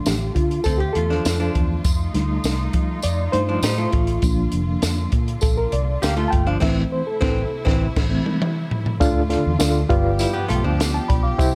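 A straight 4/4 groove at 101 BPM drives this passionate, uptempo 1960s-style soul excerpt in D minor, anchored by a compact cocktail drum kit up front with a punchy kick, high-tuned snare and dark cymbals, joined by a jingly tambourine and a round, foam-muted fingered electric bass. A reedy, mellow electric piano with fast tremolo takes the solo through the first 9.0 seconds, over a clean, hollow-body archtop guitar riff and a rich string section holding smooth, lightly vibrato-touched chords, with a band accent from 6.6 seconds and a drum fill leading into a brief closing section. The chords move from Dm through F7, Bb and Am before returning to Dm and G7, all in a dry mix with little reverb.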